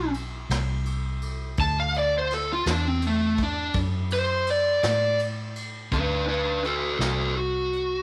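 A slow blues rolls in a straight 12/8, swaggering and laid-back, cut from a longer piece. The lead guitar runs through a small cranked amp, its overdriven, picked tone sitting up front as it carries a solo from the start until 5.9 seconds. Underneath, a vintage foam-muted electric bass played with the fingers gives a dark, round, amped bottom, also placed close. A vintage drum kit played with brushes sits farther back in the room, with dusky cymbals, a medium-tuned snare, a tight kick and a rolled-off top. The harmony rests on a D13 chord before moving to D6 at 5.9 seconds, and light reverb and small room ambience give the track an intimate, lived-in feel.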